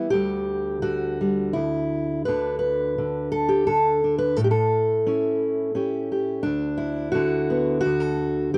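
Folk for solo fingerpicked steel-string acoustic guitar, pastoral and nostalgic, moving at 85 BPM in 3/4 with a rubato feel across this 8.6-second fragment of a longer piece. The guitar sits up front with an auditorium-sized body and audible finger squeak, spanning D2 to B4 as it passes from Dsus4 through A7 to D69, with open unaccompanied moments between the chords. The dry, close 1970s-style studio sound carries only light reverb.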